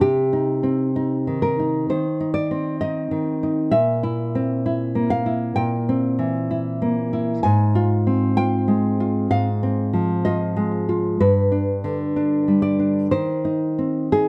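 A lone nylon-string guitar opens this intimate, passionate romantic piece for solo classical guitar, its thumb-plucked tone sitting up front and close, with fine detail caught by the microphones and a light touch of reverb. In C minor at 64 BPM in 4/4, the playing moves with a free rubato feel, spanning G2 to Ab5 as the harmony passes from Cm through C7/Bb and Fm/Ab to G by 11.2 seconds before settling on Cm/Eb. This short excerpt is cut from a longer piece.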